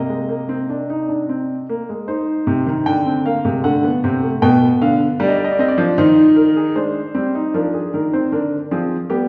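Elegant and joyful, this short classical passage is a baroque-style three-part fugue in triple metre with a straight feel, cut from a longer piece. A single grand piano carries every voice, its tone smooth and vintage, sitting up front in the mix. The recording places the listener further back in a recital hall, where a wet, lingering reverb with a 1.8-second decay surrounds the instrument. The opening idea returns at 6.8 seconds after a contrasting middle passage that begins at 2.1 seconds. The harmony moves from C minor through D7 and G7 over B, settles on C minor over E-flat, then turns to A-flat major seventh before closing the 9.3-second excerpt on a D diminished chord.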